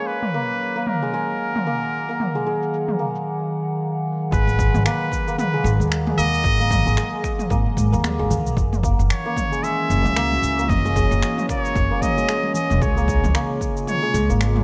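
A nasal, straight-muted trumpet sings a scooped, vibrato-laced jazz melody over a warbling, lo-fi tape-like pad whose filter sweeps through the opening 4.3 seconds, with shimmering santur arpeggios and a deep house kit of overdriven finger snaps, shaker and filtered toms, before a growly pizzicato upright bass and a punchy overdriven electronic kick enter at 4.3 seconds, joined by very quiet vintage congas, in this earthy, mystical organic downtempo cut at 113 BPM in G# minor with a lightly swung sixteenth-note feel, gritty sampler texture and tape echo on the trumpet, and a sidechain-pumping pad.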